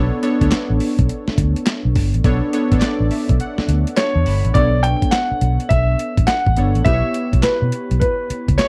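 Dry and close, like a 1970s studio session, this punchy, slick new jack swing excerpt opens on detuned sawtooth analog keys with chorus and a dark, round, foam-muted fingered electric bass. At 0.2 seconds a gritty, compressed sampler-style drum kit joins with a thumpy kick, snare, hi-hat and handclaps, all pushed through overdrive. A synth keys fill arrives at 2.8 seconds, the kick drops out at 3.4 seconds, and from 4.0 seconds an up-front grand piano with short sustain and slapback echo carries the melody over a swung groove that moves from Bm9 to C#m7b5/B.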